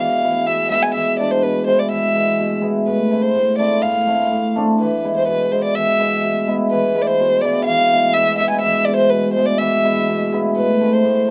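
Festive yet bittersweet, this short klezmer passage in a straight 2/4 pulse is cut from a longer piece. A single bowed violin carries the melody up front, its dark, woody tone softened by sul tasto playing and colored with vibrato. Beside it, an acoustic cimbalom supplies the hammered accompaniment, mellow and shimmering, its ringing strokes given a touch of slapback echo. Both instruments play throughout, and the music states its opening phrase and then repeats it from 6.7 seconds. The harmony rocks between E and A minor, settling back on A minor near the close at 10.6 seconds. Recorded outdoors with little reverb, the sound is dry and immediate, placing both players close to the listener.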